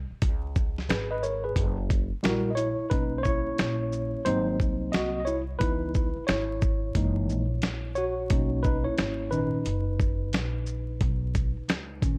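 Smooth jazz-hop with a swung 16th feel, where a woody, growly pizzicato upright bass opens the fragment, a gritty, compressed sampler-style drum kit with a thumpy kick joins up front, and a worn, slightly out-of-tune, lightly overdriven tine electric piano enters at 0.9 seconds before taking a solo from 2.9 seconds over Bmaj9 and C#m7 harmony, all wrapped in a dark, warm production with vinyl crackle.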